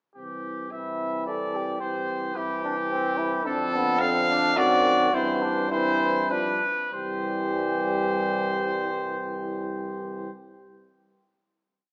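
A classical brass quintet piece in 3/4, stately and noble, played with a flexible rubato that slows from 2.6 to 6.9 seconds before coming to rest on a held final chord. A clear trumpet carries the melody up front, sounding distant and roomy, while a mellow flugelhorn enters at 0.7 seconds with a counter-melody and sustained chords. Beneath them, a dark French horn with a smooth top and a euphonium with light vibrato sit in the background, playing chords in the rhythm of the tune. A close-miked bass trombone anchors the ensemble with sustained, warm bass notes. The harmony moves from C through a D7b9 over F# and a G7 before settling back on C. The whole is bathed in a wet scoring-stage reverb, yet heard through a small-speaker sound.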